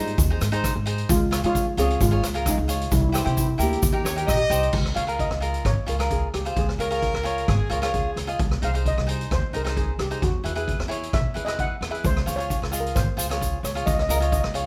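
A light reverb gives this calypso excerpt a touch of space around its close, dry steel pan, which carries the melody in a metallic, shimmering voice from double seconds struck with medium rubber sticks. The mood is sunny and carefree, with a straight feel in four. Beneath the pan, a mellow, crisp picked cavaquinho supplies the accompaniment. A woody pizzicato upright bass on steel strings holds down the low end, and an up-front street-band drum kit adds a boomy kick, rim clicks, hi-hat and dark crash cymbals with a rolled-off top. A grainy tube shaker ticks along at the start and returns near the close. A punchy, tight horn section with light vibrato adds a second line from 4.0 to 8.5 seconds, overlapping the steel pan solo that begins at 4.7 seconds and runs to the end as the chords move through Db, Ab/C and E.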